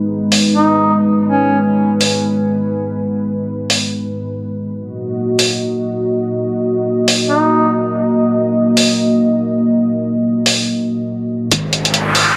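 Meditative and cavernous, this deep dubstep passage in G# minor at 142 BPM, with a swung half-time feel, rests on a dark, detuned sawtooth pad with chorus moving from G#m to D#m; a muffled, pitched-down electronic hi-hat sits up front, and a distant duduk with vibrato and scooped notes sings brief folk-style phrases through dub echo, before a round sub bass and a thumpy kick arrive at 11.5 seconds, followed by an electronic riser at 11.7 seconds, the whole scene set in a lush hall reverb.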